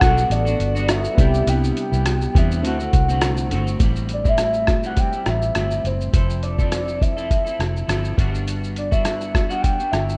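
Over a lightly swung 4/4 groove from a muffled, thumpy, pitched-down sampler-style drum kit of kick, rim click, hi-hat and shaker, this nostalgic, dreamy bedroom-pop excerpt pairs a round, foam-muted vintage bass with a twangy, slightly broken-up electric guitar drifting in lush chorus, detuned analog keys that drop out at 3.8 seconds, and a soft octave-layered synth lead carrying the melody through phaser, chorus and slapback echo, all in a rough, lightly reverberant home-demo sound.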